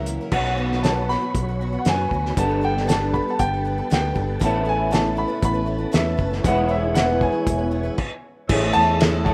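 Folk rock with a heartland rock lean, this short cut from a longer piece moves at 117 BPM in a straight 4/4 in A major, and its mood is hopeful and open-road. A clear, polished baby grand piano carries the melody high in its range, while a bright, shimmering twelve-string acoustic guitar, picked with an octave-doubled parlour sparkle and a slightly boxy body, fills in the accompaniment beneath it. An electric guitar through a small old amp plays a twangy, slightly broken-up riff with an ensemble chorus on it, and a fingered electric bass sits round and punchy underneath. A cloth-damped drum kit enters at 0.1 seconds, muffled and thuddy up front with a fat snare, tight kick and dark cymbals, and a smooth tonewheel organ joins at 0.3 seconds with sustained chords, key click and a slow rotary speaker in the background. The chords move from Bsus2 through Gadd9, Aadd9 and E6 before the band stops between 8.0 and 8.5 seconds and lands on Amaj7, all in a rough home-demo mix with light reverb and small-room ambience.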